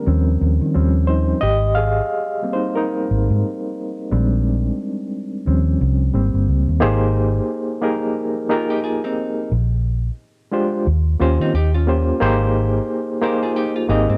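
This R&B and neo-soul cut moves at a relaxed 89 BPM in 4/4 with a gentle sixteenth-note swing, its smooth, sensual mood set in Ab major. A reedy electric piano, lightly overdriven and pulsing with medium tremolo through a combo amp, sits up front and carries a solo through the first 6.8 seconds before settling into accompaniment. Beneath it, a vintage foam-muted electric bass, round, punchy and amped, holds a dark low line close to the listener. At 8.5 seconds a clean hollow-body jazz guitar enters quietly as a second line, its fingered tone dusky and subdued. The harmony circles through lush chords such as Eb13, Abmaj9 and Bb13, and the whole recording wears the worn, warbly pitch drift of old cassette tape in a dry, close-sounding space.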